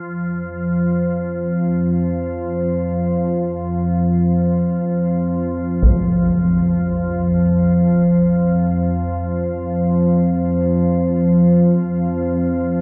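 Desolate and dark, this dark ambient drone drifts in free time, tuned slightly low at A4 = 437 Hz and cut from a longer piece. An organ-like drone sits up front from 0.0 to 12.8 seconds, spanning F2 to F3 in calm unison, its sine and triangle tones colored by ring modulation and a moving notch, with a slow attack, sustained body and long release thickened by ensemble chorus and built-in reverb. Briefly, between 5.8 and 6.0 seconds, a taiko ensemble struck with hard sticks sounds far off in the background, its acoustic hit muffled by a low-pass filter and set in a large room. A wet cathedral reverb with an RT60 of 6.8 seconds surrounds the sound, lending the production a dark, warm character.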